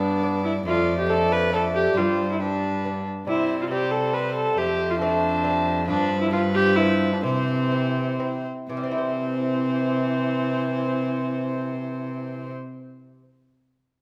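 A reverberant recital-hall ambience surrounds this festive, stately Renaissance-style consort dance in triple time, cut from a longer piece. A close, rich gut-string violin carries the melody over an up-front, reedy viola second line. A warm bassoon with vibrato and a dark, smooth-topped bowed cello fill out the lower parts, while a delicate fingerpicked lute with doubled strings sits in the background. The dance slows from 5.2 to 8.7 seconds before moving into a brief contrasting passage, and the lute rings on alone after the other instruments stop at 12.5 seconds.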